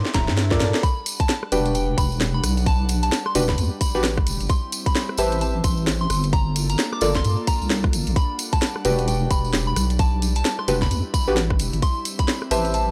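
A short drum fill and a faint electronic swell open this moody, soulful two-step garage cut, with the deep, wobbling bass already sounding underneath from the very start. At 131 BPM in E minor, the groove swings on the sixteenths, driven by a tight, up-front kick and a garage kit of hi-hat, rim click and a cracking snare, joined at 0.8 seconds by a jingly, bright acoustic tambourine. The bass is dark and compressed, with chorus and tube saturation adding grit, while a soft, pure FM bell carries the high melody through chorus and phaser. Mellow chord stabs enter at 0.5 seconds with a nasal, detuned edge and a filter sweep, followed by an airy, breathy pad that sits in the background with a sidechain pumping motion. The chords move between Gm9, Em9 and Am9, and the whole excerpt has a dry, gritty hardware sound with little reverb.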